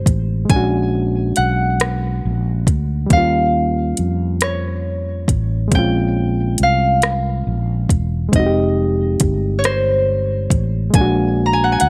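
A fingerpicked concert harp carries the ringing, up-front melody in this slow, sultry six-eight R&B passage cut from a longer piece, its yearning line sitting over a gritty, reedy electric piano heard through a combo amp. A round, dark fretless bass sits up front beneath them, while a produced, electronic drum kit enters at 0.1 seconds with a soft kick, metallic hi-hats and rim clicks. The parts move through Bb7alt, Eb9, Bbm7, Fm9 and Bb7b13 under a light reverb.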